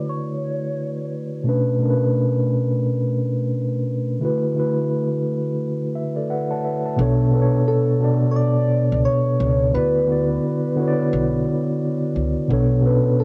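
A swung 87 BPM hip hop groove in 4/4 and B minor sets a nostalgic, hazy mood in this short excerpt, with a mellow, up-front tine electric piano playing throughout over D69 and Bm7 chords, its tone softened by cassette tape and a low-pass filter, and a filter sweep running until 7.0 seconds that overlaps the piano's own fill from 5.6 seconds. A round, gently decaying FM synth lead with chorus and vibrato carries the melody, appearing briefly at the start and returning at 7.7 seconds, while a woody, thumpy pizzicato upright bass with gut strings joins at 7.0 seconds. The whole piece has the feel of a home cassette recording in a booth with moderate ambience.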